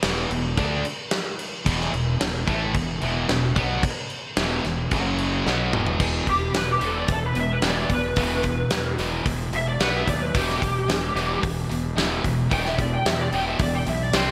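A straight 4/4 pulse at 111 BPM drives this heavy, driving hard rock clip, cut from a longer piece and tuned slightly under standard pitch. A bright, double-tracked, compressed distorted guitar picks out a power-chord riff on E5 and F#5, backed by a growly, fuzzed fingered bass with overdrive and a big acoustic drum kit with a tight kick, medium-tuned snare, hi-hat, toms and crash, soaked in gated reverb. A drum fill at 5.5 seconds ushers in a second section settled in E minor, moving through B5 to an Em chord. From 6.3 seconds a dark, lo-fi lead guitar through a small cranked amp plays a picked solo between G4 and G5, its overdrive colored by ensemble chorus and digital delay. The rhythm guitar and drums sit up front in a bright 1980s-style digital mix, with a lush hall reverb and a touch of small-room ambience.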